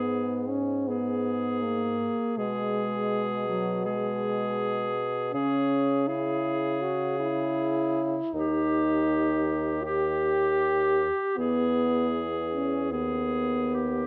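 Close, detailed microphones and a light reverb frame this elegiac, yearning slow romantic movement for wind quintet, cut from a longer piece and shaped with rubato in 4/4. A mellow bassoon carries the bass, a warm French horn with a smooth top fills the middle, and a clear, vintage-toned clarinet adds accompaniment above, with light vibrato on the bassoon and horn, a soft attack on the bassoon and clarinet, and each part up front for the full 14.1 seconds. The harmony moves from G# minor through C# minor and D# to E before settling on G# minor over D#.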